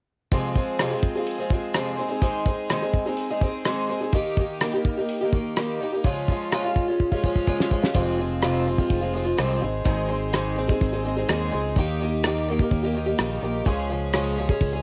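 A shimmering, octave-doubled picked twelve-string acoustic guitar with a boxy, cassette-tape tinge opens at 0.3 s alongside a cloth-damped, thuddy drum kit of fat snare, tight kick, hi-hat and rim click, setting a reflective, dusty folk rock and heartland rock mood in F minor at 126 BPM. The chords cycle through Fm, Ab, Eb and Db, and after a drum fill a growly fingered electric bass enters at 8.0 s to deepen the second section. Light studio reverb colours this home cassette recording, which is cut from a longer piece.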